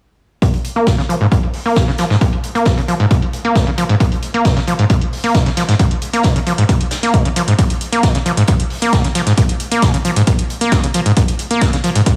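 Driving peak-time techno at 134 BPM in Bb minor, relentless and industrial, where a squelchy, gritty overdriven acid bass riff, distorted with sidechain pumping, digital delay and a filter sweep running from 0.4 to 12.2 seconds, sits up front beside a punchy electronic kick drum, while metallic electronic hi-hats pump under a low-pass filter and a swinging big-band drum kit adds natural, high-passed hi-hat and medium-tuned snare from a big room, all under light studio reverb in this short cut from a longer piece.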